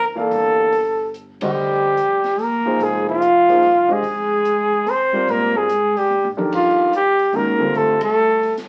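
Intense and hypnotic, this short cut from a longer modal jazz piece swings at 145 BPM in 3/4, sitting in F dorian as the harmony moves from Gm9 to Fm9 and back to Gm9 at 6.5 seconds. A dark trumpet carries the melody up front from the start, its soft attack, light vibrato and scooped notes giving the line a smoky, jazz-style voice. An upright bass, woody and pizzicato on steel strings, stays low in the background, while a grand piano supplies intimate accompaniment with long sustain and audible action noise. At 1.4 seconds a clear, close-miked tenor saxophone joins with a second line in the background, arriving on a band accent, and the full group hits another accent at 8.0 seconds. The open acoustic drum kit, with its high-tuned snare and punchy kick, enters a moment after the start, plays to the end and breaks into a brief fill just past 6 seconds. Everything sits in a club reverb and carries the crackle and aged character of a very old 78 rpm record.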